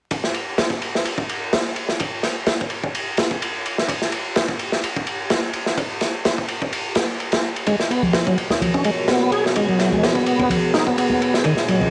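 A gritty home cassette recording, dusted with vinyl crackle and set in a small room with a moderate spring reverb, carries this raw, funky breakbeat cut from a longer piece, moving at 127 BPM in 4/4 with a light 16th-note swing in G# dorian. A crunchy acoustic breakbeat kit opens alone at 0.1 seconds and sits up front, its punchy kick, medium-tuned snare and dark cymbals sounding saturated and smooth with a rolled-off top. At 7.7 seconds the harmony arrives on a G#m11 chord, as a full, lightly overdriven tonewheel organ plays a riff through chorus vibrato, a slow rotary speaker, tube saturation and analog delay. Alongside it, a deep, moody analog pad holds sustained chords, its nasal, detuned blend of square, sawtooth and triangle waves with a sub octave breathing through chorus and sidechain pumping. Bright, compressed congas join shortly after, adding saturated acoustic percussion. At 11.6 seconds an electronic riser sneaks in, low in the background, to close out the passage.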